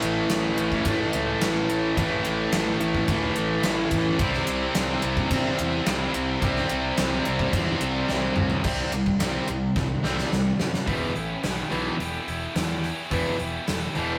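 Hard rock at 108 BPM in a straight 4/4, driving and aggressive, cut from a longer piece and captured as a rough rehearsal-room recording with warm saturation and a moderate studio reverb. Three guitars carry the riff throughout: a high-gain distorted guitar sits up front with a bright, picked edge, while an overdriven electric guitar and a double-tracked heavy high-gain guitar fill in behind it, the latter reaching up to G4. Underneath, a fuzz-laden picked bass with a dark, round tone anchors the low end down to E1. A gated 80s kit drives the track from the front of the mix, with a punchy kick, a medium-tuned snare and bright cymbals ringing in an airy stone-like room, and it plays fills at 8.1 and 9.8 seconds. The harmony moves from A to C, shifts to a C5 power chord at 8.6 seconds, and settles on E minor for the final stretch.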